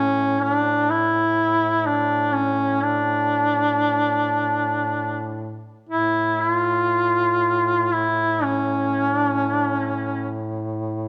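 Set in a moderate stage reverb, this brief, mournful and solemn Caucasian folk lament has a roomy sound: a clear, up-front duduk carries the melody between C#4 and F4 with vibrato and scooped notes until 10.4 seconds, over a warm, soft-attacked duduk drone on A2 that lingers to 11.1 seconds.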